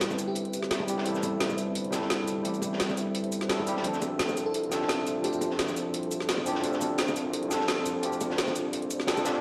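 Liquid drum and bass at 172 BPM with a dreamy, rolling mood, this excerpt builds up as a filter sweep runs across a barky, overdriven tine electric piano heard up front through a combo amp with subtle chorus and digital delay, over a glassy, ethereal FM pad, a deep, rumbling detuned saw bass, a crunchy breakbeat kit with a high-tuned snare, a garage kit with a woody snare and metallic hats, and very quiet, tight bongos, while a sparkling, bell-like FM electric piano melody sounds briefly at 0.0 and again at 4.5 seconds as the chords move from Am7 to Dm7, all set in a recital hall reverb with a dark production.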